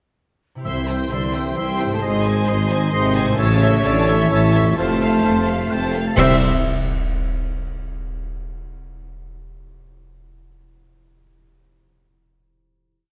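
Heroic and adventurous, this short cinematic film-score cue in 3/4 sets a rich violin section on the melody, its bowed line lush with vibrato, over a full orchestra of warm French horns, clear trombones and warm trumpet holding chords. A silver flute doubles the tune in thirds, a distant oboe answers at phrase ends, and a soft clarinet adds repeated notes, while the cellos double the tune at the octave and the double basses and mellow tuba anchor the bass beneath a very quiet bright harp's rolled chords. Close, dry timpani strokes mark the opening and the closing C chord at 6.2 seconds, and dark cymbal swells, crashes and bass drum strokes join from 3.4 seconds, all bathed in a moderate scoring-stage reverb.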